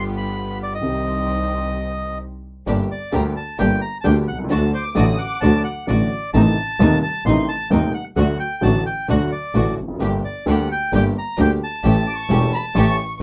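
Passionate and sultry, this tango fragment in four has a rubato feel that lets the phrasing breathe. A reedy, airy bandoneon carries the melody over a dark, woody upright piano accompaniment, while a rich, smooth studio string section adds stabs. A biting, earthy bowed double bass, played by a single player with light vibrato, sits up front as the loudest voice. After a short stop at 2.2 s, the second section moves through minor, dominant and diminished harmonies. A violin section with a soft attack, played sul tasto with an intimate closeness, adds a brief high second line at 4.7 s and again from 12.1 s. The sound is dry, with little reverb, and has the rough balance of a home demo.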